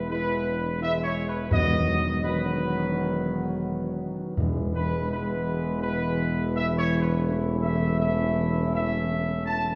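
Classical brass music with a majestic, solemn mood, this brief excerpt cut from a longer piece sets a trumpet section's melody over sustained chords from a distant, roomy French horn section and a soft-attacked trombone section in the background, all anchored by a tuba bass with light vibrato and a smooth top. Timpani struck with hard mallets add articulate, close accents between 1.5 and 5.4 seconds. The ensemble is heard from further back on a scoring stage, with a wet reverb that lends the mellow, vintage-toned trumpets a ceremonial breadth.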